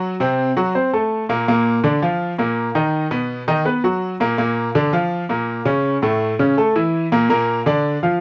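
Dry, close 1970s-style studio sound with light reverb frames this passionate, driving Latin fragment at 165 BPM in 4/4, cut from a longer piece, where a brilliant, up-front grand piano plays alone from 0.0 to 8.2 seconds across A2 to F5, its long sustain and audible action noise carrying a restless run of chords from F#dim through Bbadd11, B, Bb and A to a rootless Gm7.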